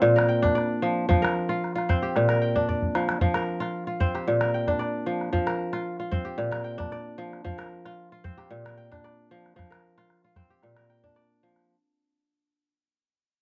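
A straight 4/4 pulse carries this flowing, hypnotic West African string excerpt, where a ringing, crisp fingerpicked kora sits up front spinning arpeggios over alternating Bb and F5 chords, joined from 0.2 s by a small, band-limited, vintage-toned calabash that adds a brief fill at 2.5 s, heard through close, detailed microphones and light reverb as the passage fades out.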